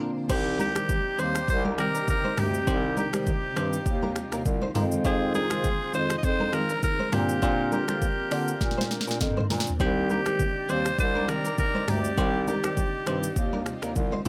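A raspy, gritty alto saxophone with tape echo carries the melody up front in this smooth, hypnotic afrobeats excerpt at 101 BPM in C minor, over a bell-like tine electric piano with phaser, a very quiet granular cloud pad, a clean, direct-recorded electric guitar riff with ensemble chorus in the background, a dark, distant horn section playing a second line, a warm vintage bass clarinet on the bass, ringing high-tuned congas entering at 0.6 seconds, and a produced afro-pop drum kit with a deep kick and sharp snare that plays a fill from 8.6 to 9.8 seconds, in a dry room.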